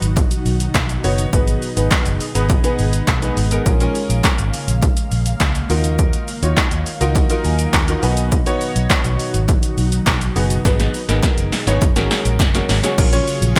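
An energetic, driving dance-pop excerpt at 103 BPM in G# dorian opens with a punchy analog drum machine of crash, handclaps, hi-hat, kick, snare and shaker, up front with gated reverb, alongside a dark, round, foam-muted fingered electric bass, a clear concert grand piano with analog chorus that breaks into a fill at 6.6 seconds, an ethereal, detuned pad sitting mellow in the background, all three pumping against the kick, and a crisp, very quiet group handclap from 0.2 seconds, moving through B, G#m, A#m7 and D#madd9 toward a drum fill at 10.7 seconds, all in a bright 1980s-style digital production with light reverb.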